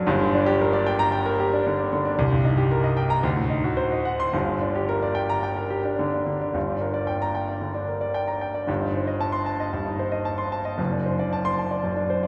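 Agitated and passionate, this 12.3-second excerpt from a classical virtuoso piano study in G minor moves at 113 BPM in 4/4 with a rubato feel. A solo grand piano with an intimate, natural tone and audible action noise ranges from F#1 to C6 and sits up front within the wet wash of a concert hall, its harmony passing from Gm through Cm7 and D7b9 before returning to Gm and leaning toward D7/F#.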